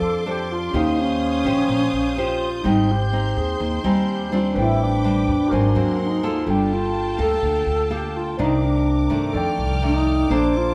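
Bossa nova at 125 BPM with a sophisticated, sunny mood, this excerpt sets a mellow, distant alto flute melody over fingerpicked nylon-string guitar, a barky, bright tine electric piano through a combo amp, lush bowed violins holding soft sustained chords high above, and woody pizzicato upright bass, all heard from further back in a large studio room with moderate reverb as the harmony moves through rich chords from Bbmaj9 to F13.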